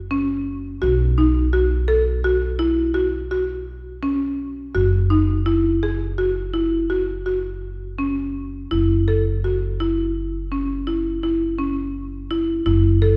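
Heard through the lush reverb of a recital hall, this hypnotic, restless fragment of contemporary chamber music in 11/8 sets a buzzing, dark marimba played with hard mallets cycling up-front arpeggios above a pizzicato upright bass with woody steel strings, moving through F#5 and B5 harmonies before settling on F#7(no3) at 8.7 seconds.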